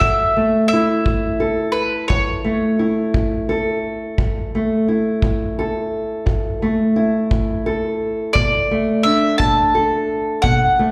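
Soulful and smoky, this short fragment of slow acoustic country blues in F# minor sways at 58 BPM in 12/8. An up-front woody mandolin on double strings carries the melody over a boxy, dark parlour-style fingerpicked steel-string guitar, both coloured by plate reverb and slapback echo, while a tight, smooth kick drum with brushes and a rolled-off top keeps time underneath. The harmony rests on F#m7 before moving to Bm7 at 8.3 seconds, and the whole performance comes across as a live gig heard through the venue's PA in a reverberant recital hall.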